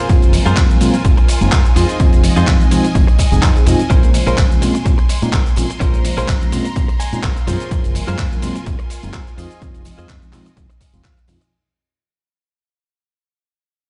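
Funky and sensual, this filtered disco house excerpt sits on a dry, punchy electronic kick placed up front, with a gritty, tape-warm sampler-style kit of handclaps, hi-hat, ride and shaker, background tambourine and congas, and a bright fingered bass, all but the kick pumping to the sidechain. A mellow tine electric piano with phaser and 12-bit sampler grit carries the accompaniment beneath a picked, clean guitar riff that adds a fill at 6.8 seconds, while a smooth symphonic string section holds sustained chords with light vibrato over changes such as Gbmaj9#11, Fm7 and Bbm9. The mix is dry, like a big sound system in a bare stone room, its top end dulled above 10.6 kHz, and a fade-out begins at 3.9 seconds.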